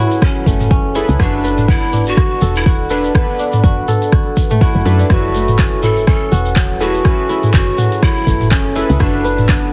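A swung afro house groove at 123 BPM in 4/4 opens this warm, earthy excerpt in F# minor, with a deep, up-front electronic kick arriving at 0.2 seconds just after an afro-pop kit of crisp hats, handclaps, rim clicks and toms and a grainy tube shaker, and a woody, round FM bass entering at 0.5 seconds. Over chords moving between F#m11 and Bm7, breathy cane pan pipes carry the melody with a chiffy attack and digital delay, while a fingerpicked, ringing kora plays arpeggios and vintage analog keys add airy, warbling chorused stabs, both pumping against the kick. The mix sits in a small room, squeezed into a heavily compressed radio-like sound.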